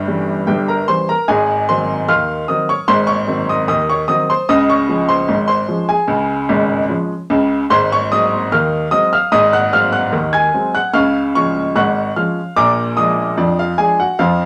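Ragtime piano in D-flat major, a playful, jaunty piece at 74 BPM in a straight 2/4 that is cut from a longer work. A solo upright piano carries the whole 14.5 seconds, its woody, intimate tone sitting up front with audible action noise and ranging from G1 to Ab6. The harmony moves from a diminished seventh through Ab7 and Db before closing on Bb7, all set in a small room with a short, wet ambience.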